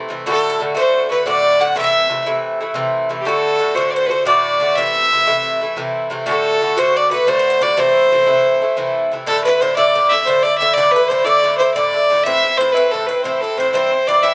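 Celtic folk slip jig in 9/8 at 120 BPM in A dorian, wild and spirited, cut from a longer piece. A mellow, metallic Irish bouzouki sits up front with its picked double strings from 0.0 s, and at 0.3 s a clear, intense fiddle takes the melody with light vibrato and a smooth top, joined by a bright bowl-back mandolin picking a second line in the background. Moderate studio reverb gives the trio a sense of space, and the harmony moves between D and Am before shifting to Dsus2 at 9.3 s for the second section and closing on C.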